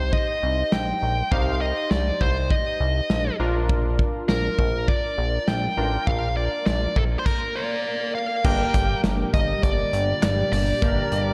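Nostalgic and upbeat, this synth-pop excerpt at 101 BPM in Bb major sets a dark, overdriven lead guitar melody up front over warbling analog keys, a glossy, nasal chorused synth bass and a punchy modern studio drum kit with handclaps and crash cymbal, while an electronic swell enters in the background at 6.6 seconds before a swirling phased analog pad enters at 8.4 seconds as the chords move from Cm through Bb to Gm, all within a lush hall reverb that gives a big arena sound.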